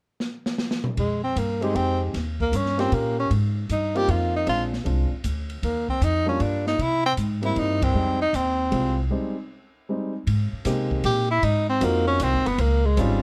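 A swung 3/4 pulse at 155 BPM opens with a fill on the dark-cymbaled, boomy-kicked drum kit, then woody, thumpy pizzicato upright bass and a smooth-topped, lightly vibratoed tenor saxophone enter at 1.0 s over F minor changes, soon joined by short-sustain grand piano in this moody, smoky small-group jazz excerpt, with a band accent at 7.8 s and a break at 9.1 s before the sax returns over Abmaj9, Ab13 and Dbmaj9 chords in light reverb.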